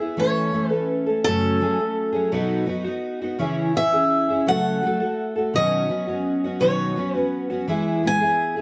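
Set in a gently rolling 6/8 at 56 dotted-quarter beats per minute with a straight feel, this short excerpt of acoustic folk for a duo or small band carries a nostalgic yet hopeful mood. A picked swing-style acoustic guitar carries the melody within a range of A4 to G#5, its boxy tone bright with fresh strings and placed up front. Beneath it, a fingerpicked twelve-string acoustic guitar supplies accompaniment from F#2 to A4, its full-bodied dreadnought sound shimmering with octave-doubled strings. Both guitars play throughout the 8.6 seconds, moving through A/E, F#madd9, B, C#m, F#m/C# and Badd9 before arriving on E at 7.7 seconds. A moderate studio reverb lends the pair a modest sense of space.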